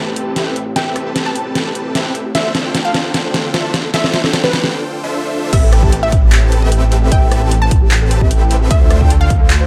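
A light reverb gives this dreamy, emotional future bass passage, cut from a longer piece, a sense of space. It moves at 151 BPM in a half-time 4/4 feel in A minor, with the harmony shifting between Am9 and Dm9. A bright, detuned unison pluck carries the melody with sidechain pumping and delay, while huge supersaw chords play a riff through a low-pass filter. A thick, saturated detuned saw bass anchors the low end. Beneath them, a soft round pluck adds chorused arpeggios in the background, and an airy, breathy pad holds very quiet sustained chords until 4.7 seconds. The up-front dubstep kit, with its deep snare, handclaps, hi-hat, rim click and crash cymbal, plays a build-up fill that gives way to a short break. At the drop at 5.5 seconds, a punchy electronic kick enters alongside a second unison pluck playing arpeggios in the background.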